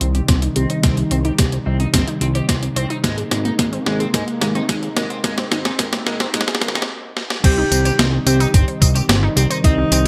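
Light reverb frames this nostalgic, driving synthwave excerpt in C minor at 109 BPM, where a fat, saturated analog bass and a thumpy electronic kick sit under an up-front, tape-toned gated 80s drum machine, a dark, shimmering chorused pulse-width pad pumps beneath bright unison pluck arpeggios carried by tape echo and a filter sweep, and a twangy, slightly broken-up electric guitar riff drifts through lush chorus, until a stop at 6.9 seconds gives way at 7.4 seconds to a breathy, distant alto saxophone melody shadowed by a very quiet FM synth bell.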